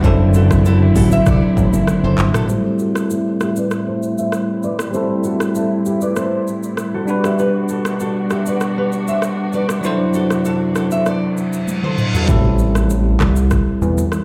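A fat, saturated analog bass with a nasal, detuned sawtooth edge sits up front in this hypnotic afrobeats excerpt at 98 BPM in A dorian, heard briefly at the start, then dropping out at 2.3 seconds and returning at 12.3 seconds. A bell-like, bright tine electric piano carries the smooth chords throughout, while a distant, woody string section with vibrato and a fingerpicked nylon-string guitar with tape echo and finger squeak play under a low-pass filter sweep until 12.3 seconds. An electronic afro-pop kit with a deep kick, smooth hats, handclaps, rim clicks, shaker and toms drives the groove, with close, ringing congas and bongos at the edges, and a reverse cymbal from 11.3 seconds leading into a drum fill and an impact, all set in a large studio reverb.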